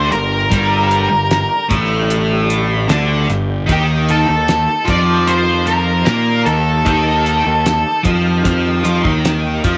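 This brief, mysterious and dark psychedelic rock excerpt opens with guitars, bass and organ sounding together: an octave-fuzz lead guitar carries the melody between G4 and D5, its distorted, picked tone sitting up front with a slapback echo. Beneath it, a double-tracked overdriven electric guitar plays a riff through a flanger. A fuzz picked electric bass supplies a round, punchy low end, also placed up front. A cloth-damped, thuddy acoustic drum kit joins at 0.1 seconds with a fat snare, tight kick and hi-hat, its gritty sound rolled off at the top as if in a small room. Very quietly in the background, a tonewheel organ holds full, lightly overdriven sustained chords through a slow rotary speaker with chorus vibrato. Moving at a steady 76 BPM in straight 4/4, the harmony shifts from G minor to an Eb power chord at 3.7 seconds, and the lead guitar drops out at 8.0 seconds while the rest continue under a light studio reverb.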